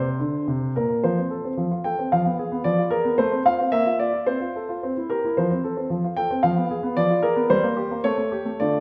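Restless yet elegant, this short excerpt from a classical-period piano sonatina in F major moves at 111 BPM in 2/4 with a rubato feel, tuned slightly high to A4 = 441 Hz. A single warm, natural-sounding baby grand plays solo, up front in the balance and spanning Bb2 to G5, while a wet recital-hall reverb with a 1.4-second decay places the listener further back in the room. After a brief opening, a new passage begins at 1.0 seconds, moving from F through diminished colors, Bb and C toward G minor, and ending unresolved on A7 at 8.0 seconds.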